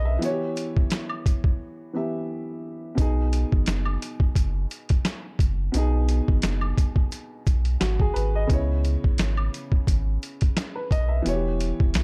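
A swung 87 BPM groove in 4/4 of gritty, pitched-down, compressed sampler drums, with a thumpy kick, a medium-tuned snare and hi-hat, enters at 0.2 seconds over a deep, thick sub bass and an intimate, woody, boxy upright piano with audible action noise and cassette-tape coloring, while an egg shaker and woodblock sit in the background of this soulful, dark boom-bap hip-hop excerpt in B major that moves from Em6 to B6 at 3.0 seconds and to C#m7 at 8.5 seconds.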